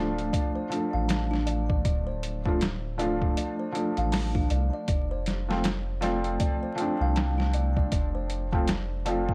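Worn, warbling cassette tape with vinyl crackle and a drifting pitch colours this short trip hop fragment, set in a small room and cut from a longer piece. At a swung 79 BPM in 4/4 and D minor, the mood is smoky and hypnotic, with the harmony resting on Dm before moving to F at 4.9 seconds. A felt-muted upright piano sits up front with a soft, intimate tone, its action noise audible, shaded by harmonic tremolo and tape echo. A round analog bass holds the low end with a deep, dark, sustained sound, while a delicate music box tinkles arpeggios through a delay, placed quieter in the mix. From 0.2 seconds a gritty, pitched-down, sampler-style drum kit with a thumpy kick, medium-tuned snare and hi-hat adds an overdriven, compressed pulse.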